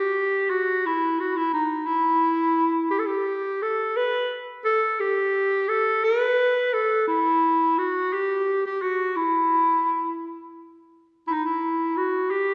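A lone clarinet opens and carries this longing, hypnotic Arabic passage in E maqam nahawand, cut from a longer piece and set at a slow 58 BPM in dotted quarters of 6/8, its bright, present, up-front tone colored by light vibrato, subtone and a jazz-style phrasing across the full 12.5 seconds, all bathed in a wet scoring-stage reverb that places the listener further back in the room.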